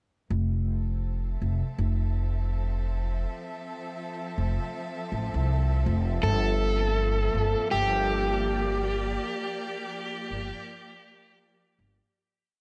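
A clear, focused studio string section fades in with bowed, vibrato-rich chords over a woody, growly pizzicato upright bass playing an up-front dub-style line, setting a deep, meditative ambient dub groove with a gentle swing on Fmaj7. At 6.2 seconds the harmony moves to Gm7 as a dark, overdriven electric slide guitar enters up front with a motif-based melody of call phrases, its notes trailing dub echo. The piece sits in an echo-heavy mix with light studio reverb and fades out from 8.2 seconds.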